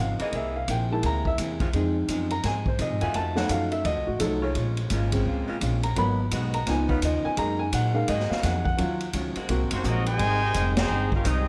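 A woody, vintage upright piano takes the solo spotlight for the first 10 seconds of this joyful big band swing excerpt at 170 BPM. Beneath it sit an up-front pizzicato upright bass, a dark, clean hollow-body electric guitar in the background, bright, smooth-topped saxophone section chords, and a distant, roomy drum kit with a boomy kick, snare, hi-hat and ride, as the harmony moves through chords such as C7b13, Fm7, Db9, Gb69 and Ebm9. At 9.7 seconds a trumpet section with light vibrato takes the melody, joined by a trombone section on a second line, and the band hits an accent at 10.7 seconds as the music lands on Abmaj7 under light reverb.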